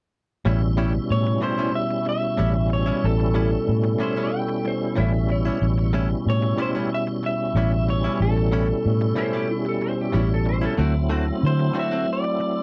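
Blues at 93 BPM in A mixolydian, soulful and rollicking, cut from a longer piece: an up-front tonewheel organ, lightly overdriven with chorus vibrato and slow rotary speaker, comps from 0.5 seconds alongside twangy, scooped stabs from a direct-recorded clean electric guitar and a dark, round, foam-muted fingered bass, while a slightly broken-up, lo-fi electric guitar through a small old amp carries the melody from 1.1 seconds and a compressed slide guitar adds a second line from 4.0 seconds, all in a dry, close 1970s-style studio sound moving from A7 to D7.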